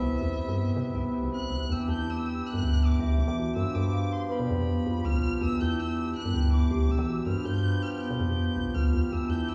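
A dark, up-front FM bass, mellow soft-mallet marimba arpeggios, a reedy, breathing harmonium holding sustained chords and a smooth, vibrato-laden solo violin carrying the melody open this urgent, restless stretch of contemporary chamber music in 5/4, with a delicate, bell-like celesta adding background texture from 1.9 to 7.4 seconds, the ensemble heard from further back in a wet recital hall.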